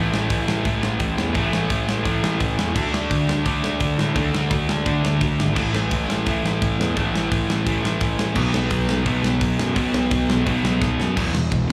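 Upbeat and rowdy, this punk rock clip charges along at 171 BPM in a straight 4/4, cycling through A5, D5, A5 and B5 before landing on E5 at 11.2 seconds. Two sludgy overdriven guitars play the riff, one dark and set back in the mix, the other warm and up front with a slapback echo, while a bright, fuzzy picked electric bass sits forward alongside a tight metal drum kit with crisp cymbals and a tight kick. The whole band sounds like a live club gig coming through the venue's PA, soaked in room reverb, with a short drum fill from 10.8 to 11.2 seconds.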